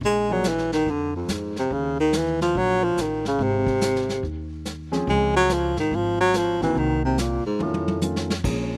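A swinging 4/4 groove at 142 BPM anchors this small-group swing and bop passage in Db major, cut from a longer piece: pizzicato upright bass with a woody, bright steel-string tone plays beneath a vintage kit played with brushes, its dark cymbals, punchy kick and medium-tuned snare sitting in a small, rolled-off space. Up front, a baritone saxophone carries the melody with jazz vibrato and a slapback echo, while a concert grand piano, intimate with audible action noise and deep bass, adds a brief touch before settling into accompaniment from 4.9 s. The mood is warm and swinging, and a drum fill at 7.6 s rounds off the phrase.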